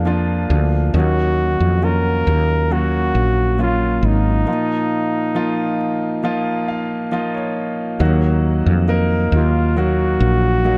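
A melancholic, emotional pop ballad in Eb minor at 68 BPM, this excerpt pairs a warm, intimate concert grand piano, rich in deep bass and audible action noise, with a dark, growly fretless electric bass that sits up front. A mellow flugelhorn enters at 1.0 seconds with a soft attack, scooped notes and a smooth top, carrying a jazz-style solo melody, all set in a small room ambience. After a break beginning at 4.5 seconds over a Bbsus4 chord, the piano plays a fill from 6.2 seconds before the music settles onto Ebm at 8.0 seconds.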